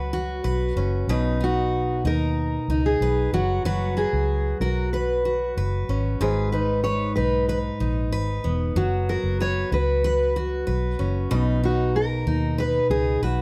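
Acoustic pop with a wistful, tender mood, moving at a steady 94 BPM in a straight 4/4, cut from a longer piece. A fingerpicked dreadnought steel-string acoustic guitar carries the melody across the whole 13.4 seconds, its full-bodied tone sitting up front. Beneath it, a picked jumbo steel-string acoustic guitar supplies the accompaniment with a rich, warm sound, while a vintage muted fingered electric bass gives a dark, round, foam-muted low end that is also placed up front. The harmony circles around F#sus4 and Badd9, with a turn to G#m near 6.2 seconds lending a touch of melancholy before settling back. Light reverb gives the close, intimate arrangement a gentle sense of space.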